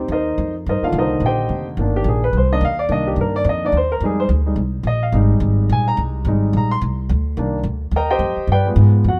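A clear baby grand piano takes the spotlight with a solo across the full 9.2 seconds, its open, long-sustaining tone sitting up front over chords that move from Cm7 to a rootless Fm7 and back before landing on G7b9. Underneath, a woody, thumpy upright bass with gut strings plays pizzicato in a dark, low register, equally close at hand. This sultry, swinging big band jazz cut in C minor moves at a brisk 214 BPM in a dry, intimate room, clipped from a longer piece.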